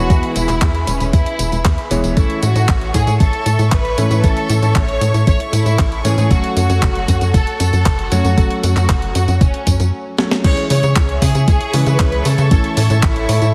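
A straight 116 BPM pulse in 4/4 drives this nostalgic, danceable italo disco excerpt, cut from a longer piece. A thumpy, tape-warm electronic kick and a clean 12-bit drum machine with a medium-tuned snare, handclaps, hi-hat, tambourine and crash cymbal enter at 0.1 seconds, both set in studio reverb, while a tight, punchy sequencer bass, sawtooth and square wave with ring modulation and a saturated filter pluck, sits up front from the start. Above it, a rich, distant studio violin section carries the melody with smooth vibrato and tape echo, and a dark chamber string section holds soft-attack, sul tasto chords close behind. A vintage electric grand piano adds short, clangy stabs. The harmony moves from E through A to F#m, and a brief break with a drum fill around 10.2 seconds leads into a new section on C#m at 10.4 seconds, returning to A. The whole mix has light reverb and a heavily compressed, radio-ready sheen.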